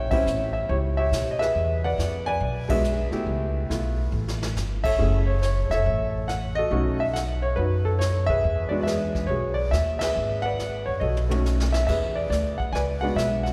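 Sophisticated and warm, this short excerpt from a longer jazz piano trio piece swings at 139 BPM in E mixolydian, with a clear, up-front concert grand carrying the melody over a woody pizzicato upright bass and a brushed drum kit with dark cymbals and a punchy kick, all bathed in a lush church reverb, with band accents at 0.0 and 2.6 seconds and a drum fill leading into the return of the theme at 11.9 seconds.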